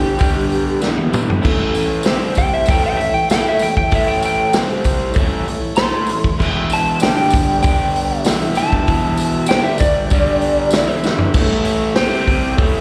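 Garage rock at 97 BPM in a straight 4/4, rowdy and raw, heard as a live gig through the venue's PA in a moderate club reverb, in a clip cut from a longer piece. A bright, slightly broken-up electric slide guitar carries a solo melody from G4 to C6 with plate reverb and slapback echo until 11.0 seconds, over an up-front, double-tracked crunchy overdriven guitar riff, sustained chords from a reedy, overdriven vintage combo organ, and a punchy vintage drum kit with a medium-tuned snare and rolled-off top. A close, dry, jingly tambourine sits in the background, and drum fills mark 0.8 seconds and the turn at 11.3 seconds, where the chords move through A and C5.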